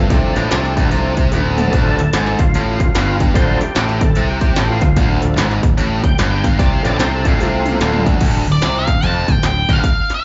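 A thick, overdriven tonewheel organ with slow rotary speaker and chorus vibrato opens as the soloist over a tight, double-tracked distorted guitar riff with slapback echo, punchy, growly fingered bass and an up-front electronic drum kit with a heavy kick, clanging snare and crisp hats, whose fills land at 1.3 and 7.4 seconds, setting a smoky, gritty blues rock and southern rock groove at 148 BPM in swung 4/4 and D minor, until the organ falls away and a dark octave-fuzz lead guitar takes the melody at 8.5 seconds, the band heard through a venue PA with club reverb in this short cut from a longer piece.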